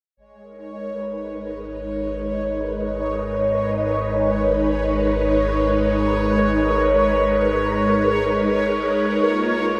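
A phased string machine fades in at 0.2 seconds with slow-attack sustained chords, its bright, swirling sawtooth tone shimmering through ensemble chorus and phaser, while a fat analog bass fades in alongside it, holding a low G#1. This is a cosmic, mysterious ambient passage in free time and G# minor, cut from a longer piece. At 0.7 seconds a bubbling stepped-filter texture rises up front on a high C#5, its resonant sawtooth stepping through random filter changes, thickened by chorus and its own built-in reverb, with a long release. The bass sits lower in the mix, a thick, detuned blend of sawtooth, square and triangle waves with ring modulation and a filter sweep. The harmony rests on G#m before shifting to A#m over G# at 9.2 seconds, and the whole passage unfolds in a vast, echoing space with a huge, wet reverb tail.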